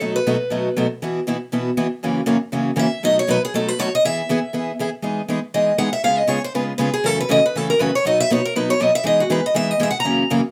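Swinging at a brisk 239 BPM in 4/4, this lively jazz excerpt in E major is cut from a longer piece and played on two picked steel-string acoustic guitars. One guitar carries the melody from F#4 up to A#5, sitting slightly louder than its partner, while the second supplies accompaniment in the range from F#2 to G#4. Both instruments sound bright and boxy, with a fresh-stringed parlour character, and the melody guitar lets an occasional finger squeak through. The harmony moves through B7, Bsus4 and F#7 before settling on E, then opens into Emaj7, C#7, F#m7 and B as a guitar solo begins at 5.0 seconds. A moderate club reverb frames the pair, keeping them up front and close while giving the room a short, lively tail.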